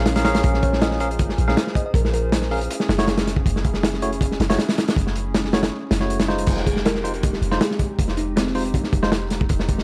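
A crunchy breakbeat drum kit with a punchy kick drives this dark, frenetic drum and bass and jungle excerpt at 159 BPM in F minor, with deep, boomy 808-style bass under tube saturation, a warbling, lo-fi tape-like pad holding chorused chords in the background, bright tine electric piano stabs trailing dub echo, and a sparkling FM electric piano melody surfacing from 0.6 to 2.5 seconds and again from 6.7 seconds, over a dry, gritty hardware sound flecked with vinyl crackle.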